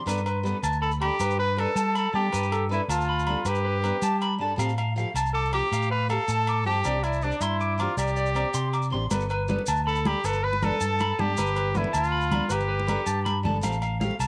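A lilting 12/8 groove drives this carefree, danceable highlife guitar band snippet, where a forceful, jazz-style trumpet with light vibrato and scooped notes leads up front over bright picked steel-string acoustic guitar chords, twangy slightly broken-up electric guitar arpeggios with analog delay, a round dark fingered bass, ringing agogo bells and grainy maracas, with warm congas joining at 9.1 s, all set in a spring-reverb room with the character of a home cassette recording.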